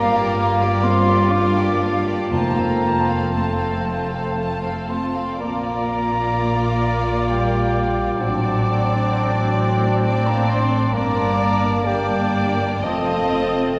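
A lyrical, warm slow movement for symphony orchestra in Bb major unfolds in a rubato 3/4 at roughly 57-66 BPM, cut from a longer piece. A violin section carries the melody with a rich, focused vibrato and a smooth top, while a second violin line sits in the background beneath it. An airy, straight-toned flute, a distant, roomy clarinet, and a mellow oboe in the background weave second lines around the tune. A mellow bassoon and a very quiet viola section supply accompaniment, a French horn section holds sustained chords, and a lush cello section joins a close, bowed double bass section on the bass line. Timpani struck with hard mallets make a brief, articulate appearance from 2.3 to 3.8 seconds, set back in the mix. The harmony moves from Gm7 through F, Bb and D7/A to Gm and F7, and the whole ensemble is heard from further back in a wet concert hall.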